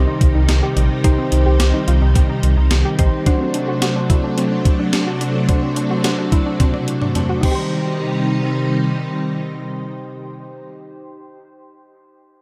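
Nocturnal and cool, this synth-pop passage, cut from a longer piece, moves in a straight 4/4 over a Cm to D7 and back to Cm progression. A shimmering, bright string machine with ensemble chorus holds sustained violin chords up front, while soft electric-piano-like synth keys, warbling and dark with chorus and dub echo, fill in the accompaniment. A gentle filtered pluck sits in the background, spinning mellow arpeggios through its own chorus and dub echo. A gated 80s digital drum machine, sampler-style and tape-warm, drives things with a thumpy kick, gated reverb snare, hi-hat, crash and toms, closing with a fill from 6.6 seconds before dropping out at 7.6 seconds. Underneath, a deep, full sub bass with an added octave anchors the opening until 3.1 seconds, and the whole mix is bathed in a moderate spring reverb and plenty of echo.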